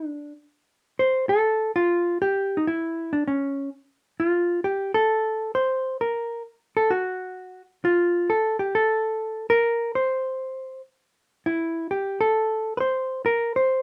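Lightly reverberant and up front, this playful, warm jazz fragment cut from a longer piece swings at 132 BPM in 4/4, carried by a solo hollow-body electric jazz guitar whose dark, clean, fingered tone moves between Db4 and C5 for the full 13.8 seconds, tuned slightly below standard pitch and shifting into a new section at 4.2 seconds.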